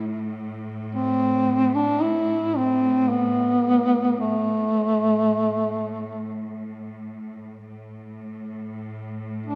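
Mournful and longing, this fragment of a Caucasian folk lament in A minor drifts in free rubato around 50-56 BPM in 3/4, tuned to A4 = 436 Hz. A mellow duduk sits up front with a vibrato-laden solo melody, while a bright, focused studio cello section holds a close, bowed drone on A2 beneath it, also shaded with vibrato. Both parts sound for the full 9.6 seconds, bathed in a wet church reverb, and a new section begins at 7.7 seconds.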